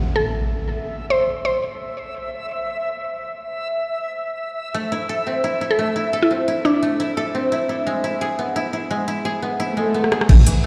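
An electronic impact and a dry, woody koto picking out arpeggios with fingerpicks open this heavy, spacious half-time drum and bass excerpt at 173 BPM, cut from a longer piece. A reversed, dreamy granular texture swells beneath on a high held note, while an up-front, mallet-like FM synth pluck, round and full-bodied with chorus and tape echo, states a short melody. After a pause the koto returns at 4.7 seconds over an A minor chord that moves to E, its tape echo trailing into the huge ambient reverb of a big, bare room. Near the end an electronic swell rises and, at 10.0 seconds, a tape-toned drum kit with metallic hats, crash, rim clicks and toms plays a fill. It lands on a knocking, up-front kick and a deep, saturated wobble bass with dark square-and-sine weight just as the excerpt ends.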